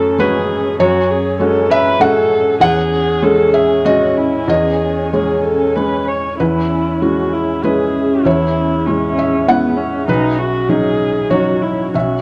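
A felt-muted upright piano, a single bowed viola and an ethereal, airy pad begin together in this melancholic, fragile neoclassical excerpt, moving at a rubato 98 BPM in 3/4 and C# minor. The intimate piano sits up front with a mellow tone and audible action noise. Beside it, the dark, woody viola plays sul tasto with vibrato, while the chorused, detuned pad holds slow-attack chords in the background. The chords pass from F#madd9 through C#m/E and E6 to Badd9 at 10.1 seconds, all under light reverb and the warbly pitch drift of worn cassette tape.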